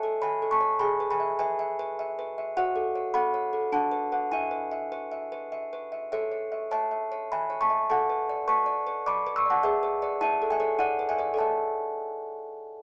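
A solo music box carries this tender, innocent classical lullaby in A major, its delicate, tinkling plucked tones having a mellow softness from a large box and sitting up front in a moderate club reverb. The piece moves in 3/4 at 102 BPM with a straight feel, its range spanning D4 to E6 across a single section of about 12.8 seconds. Gentle harmonies pass through F#m, Bm and E7 before settling home on A at 11.4 seconds, in a brief cut from a longer piece.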